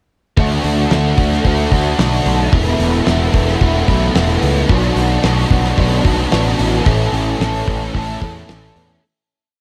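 Wistful and hazy, this short rock piece leans into shoegaze and dream pop at 111 BPM in a straight 4/4, with everything arriving at 0.4 seconds in a single chorus. A biting overdriven guitar carries the riff with double-tracked, strummed chords and whammy-bar dips, sitting up front and coloured by analog chorus. Beneath it, a growly fuzz electric bass drives steady eighth notes, picked and overdriven with a bright, direct edge. A loose indie drum kit recorded in a small room gives a big rock groove through hi-hat, a fat snare and a tight kick. The chords move from D to Esus4 to Bm7 and settle on A as the piece fades out from 6.9 seconds, all within a dark, warm studio ambience.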